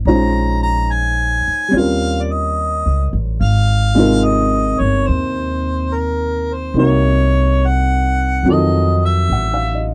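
A mellow harmonica carries the melody, entering at 0.1 seconds with light vibrato and scooped notes in a jazz solo style that sounds roomy and a touch distant while still sitting up front. This is a late-night, romantic jazz ballad in Ab major at 71 BPM in 4/4, with a gentle swing on the eighth notes. An upright piano with a woody, vintage tone and short sustain plays accompaniment from the very start, moving through rich chords such as Bbm11, Eb13, Ab69 and F7b9. Beneath it, an acoustic upright bass with steel strings is plucked pizzicato, its warm, woody low end placed close and prominent in the mix. The dry, intimate sound recalls a close 1970s-style studio session, and this brief excerpt runs to 9.9 seconds as part of a longer piece.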